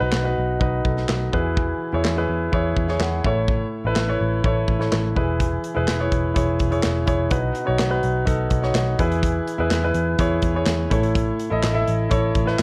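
Driving and dramatic, this piano-driven pop passage, cut from a longer piece, moves at 125 BPM in a straight 4/4 over chords cycling through B, E and A. An up-front, intimate concert grand with audible action noise and long sustain carries the accompaniment and adds a brief fill at 2.8 seconds, while a dark, round, foam-muted picked electric bass holds the low end and an acoustic kit with a tight kick, medium-tuned snare, hi-hat and handclaps drives from 0.1 seconds. The whole mix sits in moderate studio reverb and carries the worn, warbling pitch drift of old cassette tape.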